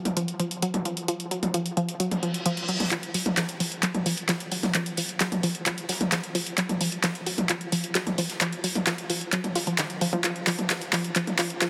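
A punchy, tape-warm analog drum machine with handclaps, hi-hat and toms opens this hypnotic, relentless peak-time techno excerpt, joined almost at once by an up-front, lush detuned sawtooth unison pluck riff with a noisy, ring-modulated edge, tube saturation and digital delay, before a reverse cymbal and riser lead at 2.9 seconds into a build-up where a natural, fat-snared arena kit with ride cymbal sits in the background under a drum fill and a filter sweep on the synth, all bathed in a huge ambient reverb and a heavily compressed, radio-like sound.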